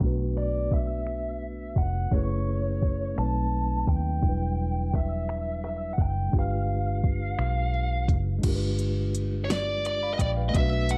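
A slow six-eight R&B groove at 57 BPM sets a yearning, sultry mood: an up-front electronic drum kit with a soft kick, fat snare, smooth hats, finger snaps and crash sits over a dark, round, foam-muted fingered electric bass, while a mellow, clean tine electric piano comps through changes from Bm7 to G7b9. From 0.4 seconds, a bluesy overdriven lead guitar, picked and distorted with slapback echo, carries the melody, as a filter sweep colours the digital ambience across the first 8.4 seconds. A lush, bowed symphonic string section slips in at 10.5 seconds, barely audible, just before this fragment of a longer piece cuts off.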